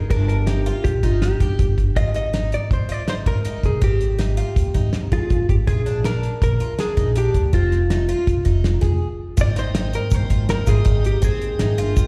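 A growly, woody upright bass opens this intricate, brooding progressive instrumental in 5/4, joined at once by a dark, compressed hollow-body jazz guitar melody with slapback and tape echo, shimmering octave-doubled arpeggios from a boxy twelve-string acoustic, and a damped 70s drum kit with a fat snare and tight kick, the band caught live through a venue's PA in recital hall reverb, until after a brief break a piping, lightly overdriven tonewheel organ on slow rotary speaker and a grainy egg shaker enter at 9.4 seconds.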